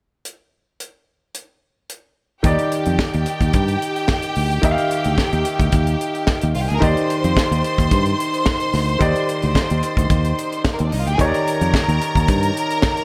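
Disco excerpt, joyful and danceable, where a tight funk drum kit with a high-tuned snare opens alone before a round, punchy fingered electric bass, a clear grand piano and a bright, biting string section with lush vibrato all enter at 2.4 seconds over an Ebmaj7 chord, set in light small-room reverb.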